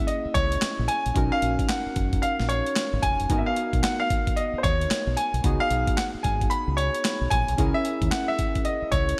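A compressed, gritty breakbeat sampler kit swings its 16ths at 112 BPM, with a thumpy kick, medium-tuned snare, hi-hat and handclaps sitting up front under a clear, polished baby grand piano melody carried on delay, while detuned square-and-sawtooth analog keys with chorus and a filter sweep voice the A#m7b5, Bmaj7, G#m9 and C#7sus4 changes, and a dark, round fingered electric bass anchors this punchy, slick new jack swing R&B excerpt, set in a lush 2.5-second hall reverb with bright 1980s-style digital production.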